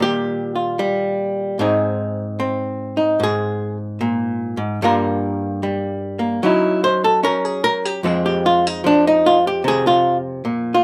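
A solo archtop guitar, miked and amplified, sits up front in a light reverb, its clean, dark, hollow-body tone giving this short excerpt a sophisticated, playful character. The genre is solo jazz at 75 BPM in 4/4, with a swung eighth-note feel that keeps the sophisticated mood playful. The picked electric guitar plays alone for the full 10.8 seconds, ranging from F2 up to C5. Its harmony moves through Ebadd9, Abadd9, Gm7 and Gb5 before reaching Fm. Tuned slightly sharp to A4 = 443 Hz, the recording is a brief fragment cut from a longer performance.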